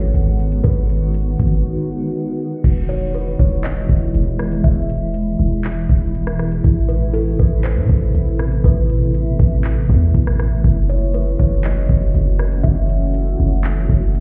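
A deep, boomy 808-style bass sits up front in this blissful, dreamy excerpt of atmospheric cloud-rap hip hop, its sine tone carrying a noise layer and a fast attack that decays into a mellow tail. Set at 120 BPM in 4/4 with a half-time feel in E major, it shares the foreground with an electronic R&B drum kit of knocking kick, metallic hi-hats, handclaps, rim clicks and crash cymbal, which enters at 0.1 seconds. Beneath them, a shimmering, ethereal pad holds sustained chords with an octave-up shimmer, its dark, granular texture evolving through chorus, phaser, built-in reverb and sidechain pumping. A softer kalimba carries the melody with woody, ringing thumbnail plucks, rounded by a low-pass filter and echoed by digital delay in a boxy small-room tone. After a break from 1.6 to 2.6 seconds, the harmony moves through Emaj7, Amadd9 and F#m7, and the whole mix sounds muffled, as if heard through a wall, coloured by stone room reverb.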